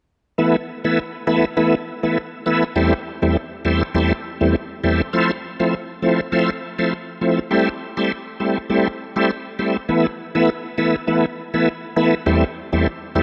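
A lush hall reverb with a long 2.6-second tail surrounds this short dancehall cut, and nothing sounds above 10.7 kHz. The only instrument is a tonewheel organ, placed up front and playing accompaniment from 0.4 to 13.2 seconds across a range of E2 to E4. Its tone is full, bright and shouting yet clean, with audible key click, a chorus vibrato shimmer and the turning motion of a slow rotary speaker. The groove sits at 101 BPM in 4/4 with a 56% swing on the sixteenths, giving the mood a tough, hypnotic pull. The chords cycle through Esus4, C6/E, Fmaj7 and Am7 before returning to Esus4 and C6/E, and the passage is taken from a longer piece.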